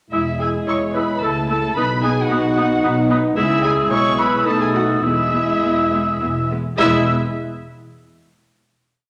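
In a 3/4 at 100-113 BPM with a rubato feel, this brief, spirited classical-period movement for symphony orchestra in E major opens at 0.1 s with a dark, woody violin section carrying the melody while a second, intimate violin section doubles it very quietly at the octave, alongside a clarinet doing the same from the background, an airy metal flute and a vintage oboe adding repeated notes and chords in the rhythm of the tune. Beneath them, a floating viola section supplies repeated notes and sustained chords, a mellow French horn section holds sustained chords, and a close cello section plays bass on the beats, doubled by the double bass section, the lower strings all bowed sul tasto with soft attacks. The harmony moves through E, A/C#, B, C#m and B7 back to E, settling on a final chord at 6.8 s in a wet recital hall reverb.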